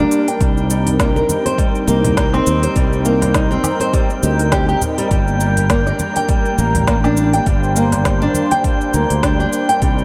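A dreamy mix soaked in cathedral reverb with a 5.7-second tail frames this hypnotic, mystical piece of organic downtempo in G minor, cut from a longer track and moving at 102 BPM in 4/4 with a swung sixteenth-note feel. A smooth, detuned sawtooth pad with chorus and sidechain pumping holds sustained chords that move from Cm7 to Gm, while a dark, small-sounding nylon-string guitar plays fingerpicked arpeggios coloured by vintage 12-bit sampler grit and tape echo. Up front, a growly, bright fretless electric bass sustains low notes with tube saturation and its own sidechain pumping. High above, a glassy texture of drifting sine overtones holds a single calm note with chorus and built-in reverb. The deep, tape-warm electronic kick drum enters at 0.4 seconds beneath an overdriven electronic kit of woody snare, crisp hi-hats, shaker and woodblock, and very quiet, close congas come in at 0.9 seconds and drop out at 8.6 seconds.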